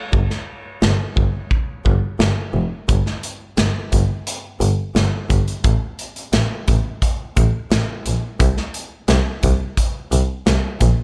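The recording is dry and close, with little reverb, and both parts sit up front. This hopeful, uplifting piece of piano-driven pop moves at 87 BPM in a straight 4/4 and is cut from a longer piece. A single bowed double bass carries the low end from F1 to C2, its tone rich, smooth and even, with vibrato. An acoustic studio drum kit plays hi-hat, a medium-tuned snare and a punchy kick in a pumping room sound. Both parts run together through nearly the whole 11 seconds, from 0.1 s to about 11.0 s.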